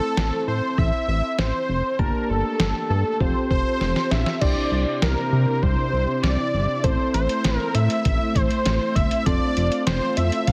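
From 0.2 s, a muffled, pitched-down lo-fi sampler-style drum kit with a thumpy kick and a dark, glossy chorused synth bass with a filter pluck set a straight 4/4 pulse at 99 BPM in this cool, melancholic synth-pop excerpt. Soft, round electric-piano-like synth keys carry the accompaniment, and a thick, nasal unison lead with vibrato and digital delay sings the melody over chords moving from Am through Gmadd9 and Fadd9. After a drum fill at 3.8 s, a mellow, vintage ensemble organ-string enters at 4.4 s with sustained chords as the harmony shifts to Cadd9, all within a moderate concert hall reverb and a heavily compressed, radio-like sound.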